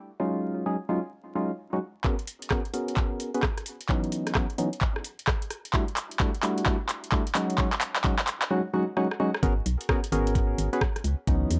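Soulful and skippy, this UK garage two-step cut at 130 BPM in G# minor opens with dark, hollow organ stabs carrying chorus and tape echo over minor eleventh chords, then a knocking electronic kick and a garage kit of handclaps, rim clicks and metallic hats arrive at 2.0 seconds for a build-up with drum fills and a filter sweep on the stabs, before an organ-like FM bass drops in at 9.4 seconds, all framed by gritty hardware grit, vinyl crackle and light reverb.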